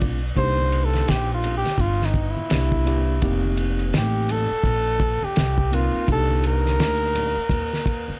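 Jazz-hop at 84 BPM in C dorian, cool and nocturnal, where a veiled, bucket-muted trumpet with vibrato and scooped notes solos from 0.4 seconds through analog delay over a mellow tine electric piano voicing Cm9, C9 and F9sus4, a woody pizzicato upright bass, a cloth-damped thuddy drum kit with a fat snare and dark cymbals, and distant congas and tube shaker, all captured in a dry, gritty hardware recording with transformer saturation.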